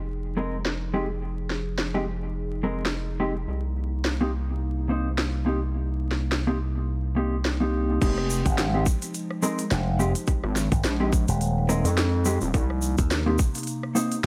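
A swung 106 BPM glitch hop groove in F minor opens this playful, gritty excerpt, with a warbling, lo-fi pad sustaining Fm7 and Cm7 chords under sidechain pumping and chorus, a saturated, resonant synth bass, dark clean electric guitar stabs trailing tape echo, and a crisp, cracking drum kit with low-pass filtered hats, snare and cymbals over vinyl crackle, until the drop at 8.0 s brings in a tight electronic kick, a grainy egg shaker and a punchy slap bass with an envelope filter.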